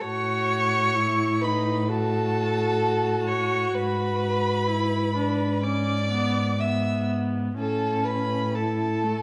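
A dark, warm recording sets this string quartet in a recital hall with moderate reverb, giving the players a soft halo of room sound. It is a slow, romantic classical movement in A major at 64 BPM, played with a tender, serene rubato feel, and this passage is cut from a longer piece. The first violin carries the melody high in its range, sounding somewhat distant, with a soft attack, expressive vibrato and gentle portamento between notes. Beneath it the second violin's line is clear and focused, while the viola supplies smooth, even accompaniment with light vibrato. The cello sits close and up front, its rich, bowed bass anchoring the harmony as it moves from an A6/9 chord to E7 over G# at 3.8 seconds and back home to A at 7.6 seconds.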